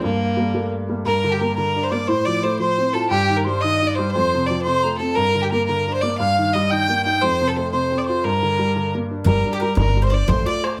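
A moderate studio room with a 0.6-second reverb frames this short cut from a longer Celtic jig as a dark, driving G minor tune moves at 117 BPM in a straight 6/8. Up front, a focused bowed fiddle with light vibrato carries the melody through slapback echo and plate reverb over a worn grand piano with long sustain, while a breathy, mellow metal whistle with soft chiff enters behind them at 1.1 seconds as a second line. Near the close, a bright picked bowl-back mandolin slips in at 9.2 seconds, and at 9.3 seconds a woody, thumpy pizzicato upright bass and a damped, tight bodhran join to lift the lively final phrase.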